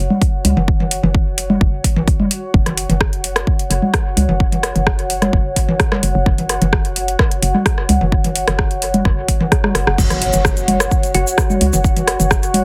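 A punchy electronic kick sits up front in this cool, clinical minimal techno excerpt at 129 BPM, layered with a garage drum kit of metallic hi-hats, rim click and crash, and a booming analog drum machine whose congas, toms and rim clicks carry dub echo. A hollow, bouncy FM bass knocks in the low end with tube saturation and sidechain pumping beneath a warbling, nostalgic, lo-fi pad built on detuned sawtooth and triangle tones. After a drum fill, the drop arrives at 10.0 seconds with a background impact and a grainy egg shaker, and a round, tine-like thumb-piano pluck with phaser and dub echo briefly surfaces at 11.1 seconds, all within a heavily compressed, radio-like mix.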